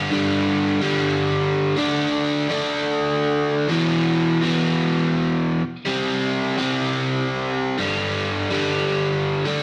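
A biting, overdriven electric guitar opens this short rock excerpt alone and plays picked power chords through a driving, confident progression of G5, D5, E5, C5 and back to G5, running from 0.0 to 9.6 seconds. The double-tracked guitar sits up front, its overdrive carrying a warm edge, while a wet stone-room reverb and tube saturation give the rough rehearsal-room sound a raw, live character.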